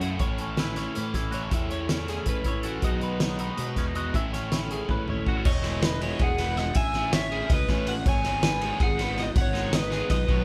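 A loose indie drum kit with a fat snare, punchy kick and dark cymbals sits up front in a pumping room, opening this bright, intricate math rock and midwest emo excerpt in 7/8 alongside a growly fuzz bass, a double-tracked crunchy guitar riff soaked in spring reverb, warm twelve-string arpeggios with vibrato, and a twangy phased guitar accompaniment that drops out at 5.5 seconds after a drum fill, when a second overdriven guitar takes up the melody over Emaj9, Amaj9 and G#m7 chords, all captured as a band playing live in one room.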